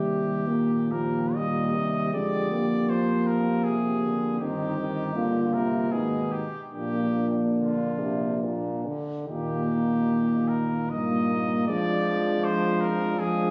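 Captured on a phone in a studio room with compression, a muffled top end and a moderate stage reverb, this tender, hymn-like classical brass band passage in a rubato three-time unfolds as a clear cornet carries the melody over a tight, warm French horn section singing a second line in the background with light vibrato, a mellow euphonium and a brilliant but distant, roomy trombone with light vibrato filling in the accompaniment, and a dark, smooth-topped tuba with light vibrato anchoring the bass, all playing throughout the 13.5 seconds cut from a longer piece.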